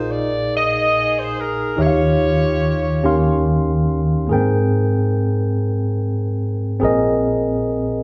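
Recorded live in one room with a large studio reverb, this reverent, soulful gospel fragment in a straight 6/8 sets a clear, smooth-topped jazz saxophone section with light vibrato up front on the melody until 3.5 seconds, over a clean, direct tine electric piano that carries lush suspended and extended chords through the full 8 seconds.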